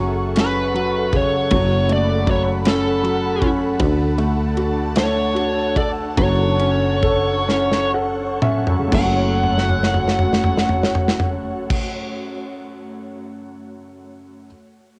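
Heard through the light reverb of a home cassette recording, this melancholic, dramatic six-eight pop ballad sets a clear concert grand piano and an ethereal, chorused pad over a growly fretless bass, while a punchy studio drum kit and the piano add fills as the pace slows from 3.8 to 8.9 seconds, a dark, distorted lead guitar with analog delay sings a bluesy melody up front, and the piano rings on alone until 14.5 seconds.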